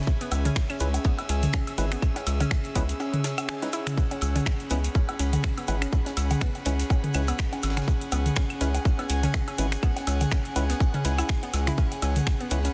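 A very quiet, damped 70s drum kit with ride and snare and an airy, breathy chorused pad open this quirky, cool minimal techno excerpt at 123 BPM in C# minor, quickly joined by a tight, up-front electronic kick drum, a grainy egg shaker, a hollow, bouncy square pluck riff with phaser and delay, a booming analog drum machine with finger snaps and metallic hats, a round, deep analog bass pumping under the sidechain, an electronic woodblock, toms and claves in digital delay, and a mellow, percussive organ stab at 0.8 seconds, all over a swung C#m7 groove where the kick drops out from 3.0 to 4.0 seconds in a dense, heavily limited modern mix.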